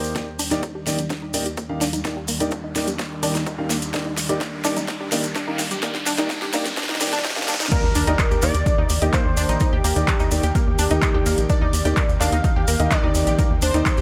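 This driving, bittersweet progressive house excerpt at 127 BPM opens on a breathy, chorused pad in the background, intimate grand piano stabs with audible action noise, grainy distant maracas and background electronic swells. From 0.2 seconds, a lush detuned pluck arpeggiates over an Ebmaj7 chord alongside a punchy, overdriven electronic kick and a deep house kit with a fat snare, claps, hi-hat and crash, joined at 0.9 seconds by very quiet dry congas, all building through a filter-swept riser and drum fill. At 7.7 seconds the drop lands with an impact, bringing in a catchy sawtooth lead with vibrato, followed at 7.8 seconds by a tight, pumping sequencer bass, all in a light reverb.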